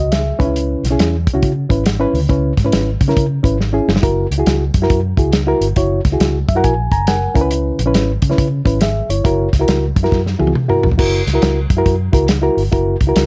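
Danceable and uplifting, this uptempo 1960s-style soul piece moves at 138 BPM in 4/4 with a swung eighth-note feel, centered in F# mixolydian. A reedy, worn electric piano sits up front, slightly out of tune and clean through its built-in speakers, carrying the accompaniment over chords that alternate between C#m7 and F#7 and stepping forward with a short fill at 6.2 seconds. Beneath it, a vintage fingered electric bass gives the low end a dark, round, foam-muted tone that sounds amped and punchy. The acoustic drum kit is dry, lo-fi and muffled, with dark cymbals, a medium-tuned snare, a tight kick and a rolled-off top, and it breaks into fills at 3.6 and 10.1 seconds. Light reverb and a small room ambience frame the sound in this excerpt cut from a longer piece.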